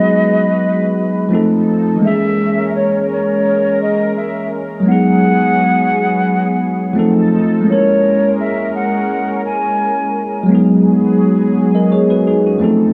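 A lightly swung 16th-note groove at 85 BPM in 4/4 sets up this hazy, reflective lo-fi hip hop fragment in G# minor, circling through G#m7, F7 and A#m7b5. A clean, bell-like tine electric piano sits up front with the accompaniment while a breathy, mellow silver flute carries the melody with vibrato and a crisp attack until 10.5 s, both softened by a low-pass filter. Beneath them, a lush, detuned unison pad holds thick, warbling sawtooth chords with chorus, all set in a small, reverberant room and colored by cassette tape.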